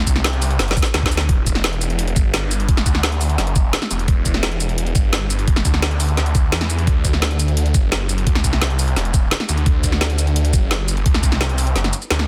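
Mechanical and tense, this dark, technical drum and bass excerpt is driven by a snarling, distorted sawtooth bass that growls low with a detuned unison edge, a moving notch and a fast, sustained, compressed bite, sitting bright and up front. An overdriven electronic kick gives a layered, knocking punch, while the drum kit adds a woody snare, bright hats and shaker, with a drum fill at 0.6 seconds. The dense, heavily limited master keeps the room dry and the whole track pressing forward.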